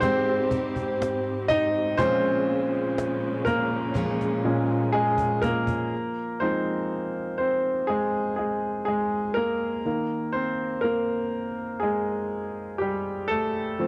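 A clear, polished concert grand piano sits up front in this melancholic, longing pop ballad fragment in F minor, moving at a slow 61 BPM in straight 4/4 and carrying solo lines over a deep bass register. Beneath it, a lush bowed string section holds sustained chords with vibrato and portamento, while a full-bodied jumbo steel-string guitar with fresh strings picks arpeggios in the background. A snappy cajon played with hard hands, its snares close-miked and colored by cassette tape, adds a drum fill from 4.0 seconds. The harmony moves from Abmaj7 to Bbm7, then to Fm7 and Ebsus4. The strings and cajon stop at 5.9 seconds and the guitar at 6.4 seconds, leaving the piano alone, all under a light reverb with the character of a home cassette recording.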